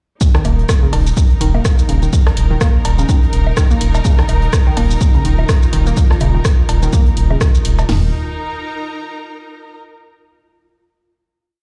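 A punchy analog drum machine drives this clinical, quirky minimal techno piece with an up-front four-on-the-floor kick, a punchy snare, floor tom and open hats. A second drum machine layer fills in programmed closed hats, rim and shaker on the backbeat, with a swung sixteenth feel. Underneath, a very quiet, dry acoustic kit with a fat, rolled-off snare plays a looped, edited breakbeat. A thick, saturated sine sub bass sits up front on the off-beats, and it pumps against the kick alongside a hollow, bouncy square-wave pluck. That pluck's detuned, phased and chorused nine-step sequence drifts against the bar through a delay. Overdriven cowbell and woodblock add clicks and blips in cross rhythm from the background, soaked in tape echo. A rich, bowed studio string section with vibrato carries slowly shifting chords throughout, and a faint, swarming granular drone enters at 5.4 seconds on a tense held high note. 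The strings ring on as a final chord from 7.9 seconds to 9.8 seconds, in a big, bare-room reverb.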